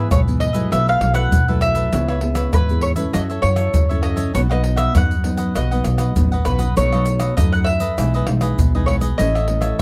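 A dry, close studio sound in a 1970s style frames this short cut from a longer samba and choro piece, playful and sunny at 99 BPM in a straight 4/4. An up-front, mellow mandolin picks the melody in doubled strings, over a crisp picked cavaquinho and a full-bodied, fingerpicked nylon-string guitar with audible finger squeak and a deep classical tone. Underneath, a woody pizzicato upright bass and a small-room percussion group of egg shaker, tight surdo, pandeiro and tamborim, played with hard hands, carry the groove through changes from E and B7sus4 to C#m7, F#m7 and on to Emaj7/B and A.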